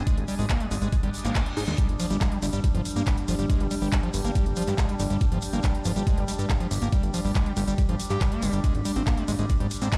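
Intense and hypnotic, this excerpt from a longer psychedelic trance piece runs at 140 BPM in a straight 4/4. An up-front, knocking electronic kick drives it, joined by a layered electronic kit of handclaps, crisp hats and ride cymbal, with a grainy, close and dry shekere sitting in the background. Low down, a fat, detuned sawtooth analog bass holds the floor with a fast filter pluck. Above it, an overdriven acid bass plays a squelchy, gritty square-wave riff, resonant and distorted, thrown into dub echo and pumped by the sidechain. A resonant drone of sustained chords sweeps its moving overtones through chorus and built-in reverb, while a deep, moody ambient pad adds a wave-folded, ring-modulated texture in the background. An electronic reverse cymbal sounds from 1.1 to 1.8 seconds, and the whole mix sits in a large, bare-room studio reverb, as if played on a big sound system.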